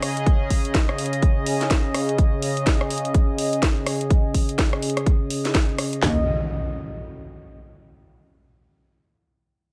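Swaggering and bouncy, this bass house cut at 125 BPM with a swung 16th feel opens on a bright, detuned sawtooth pad carrying sustained chords with chorus, 12-bit sampler grit and sidechain pumping over punchy, cracking electronic drums with hi-hat and rim click, until at 6.0 seconds a metallic, distorted FM wobble bass and an electronic impact hit together in a light reverb.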